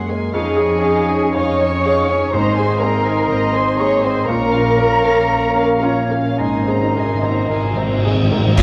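A slow, rubato pulse in 4/4 at roughly 53-63 BPM carries this tender, uplifting passage of cinematic film score, cut from a longer piece. Muted violins sing the veiled, con sordino melody, while a clear solo oboe, a mellow clarinet, a second violin line and a bright, pure flute section weave supporting lines above a clear piano in the background. Muted violas and dark French horns fill out the harmony, and muted cellos and double basses anchor the low end as the chords move from Dbadd9/F through Abadd9 and Bbm and back to Abadd9. Timpani struck with hard mallets enter at 2.3 seconds and move into a fill from 6.4 seconds, joined at 4.3 seconds by a cymbal swell, clash cymbals and concert bass drum. The whole orchestra sits in a wet scoring-stage reverb, coloured by the worn, warbling pitch drift of old cassette tape.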